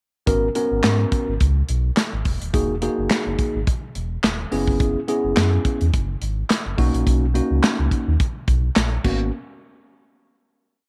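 A mellow tine electric piano with subtle chorus pushes rootless chords through G#m11, Emaj9#11, F#7sus4 and Bmaj9 over a deep, fat syncopated sub bass with octave and a punchy, up-front mid-tempo boogie beat of kick, medium-tuned snare layered with handclaps, hi-hat and crash, giving this short, late-night, slick early-eighties boogie funk piece in G# minor at 106 BPM with a 16th-note swing its groove before a final hit rings out in light reverb from 9.3 seconds.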